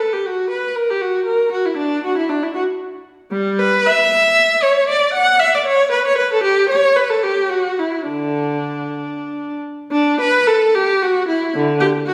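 A wet recital-hall reverb surrounds this short excerpt, heard from further back in the room, where a single bowed viola sounds rich and distant yet stays up front. The serene, radiant baroque-style suite movement unfolds in a rubato 6/8 at 60-80 BPM, counted in dotted quarters, settling into D major from 3.3 s. The unaccompanied viola ranges from D3 to F#5 and sings expressively with vibrato and portamento until it breaks off at 12.1 s.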